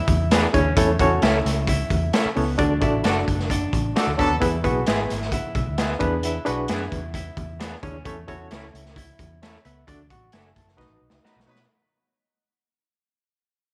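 Joyful and warm, this uptempo 1960s-style soul cut fades out from the start as a dark, clean hollow-body jazz guitar riff rides over a round, foam-muted fingered bass and a gritty, boomy garage drum kit up front, while twangy lo-fi guitar stabs and a barky, reedy electric piano with light overdrive and fast tremolo fill in the accompaniment, a distant, loose horn section pokes through only at 3.9 and 11.2 seconds, and the band hits accents, the second one overlapping a closing drum fill at 10.8 seconds.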